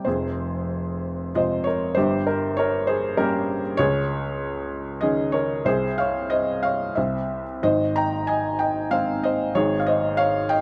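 Bittersweet and cool, this brief fragment of a lyrical classical piece for solo piano unfolds in F minor at around 90-99 BPM in 3/4, its pulse loosened by rubato. A felt-muted upright piano carries the whole passage alone from 0.0 to 10.6 seconds, ranging from a deep F1 up to Bb5. Its tone is muted and intimate, with the thin felt softening each note and the instrument sitting up front in the sound. The harmony drifts from F minor through G diminished and a Db sus2 to a Dbmaj9 over C, passes through a brief chordless moment at 7.0 seconds, then settles toward Ab and Db over Ab. Close, detailed microphones and a light reverb keep the recording personal and near, as if heard from beside the player.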